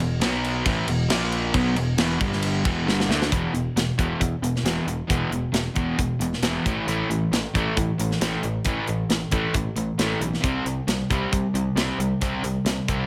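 Hard rock with a heavy, driving straight 4/4 feel, cut from a longer piece, built on two overdriven, picked electric guitar riffs: a hollow-body semi-hollow guitar sits up front while a crunchy one stays in the background, over a growly, direct picked electric bass. A tight metal drum kit with a medium-tuned snare and rolled-off top plays crash, hi-hat, kick and snare up front in a studio room, with light reverb. A drum fill at 2.9 seconds leads into the second section at 3.3 seconds, where the harmony settles on E5 before moving to A5 and then C5.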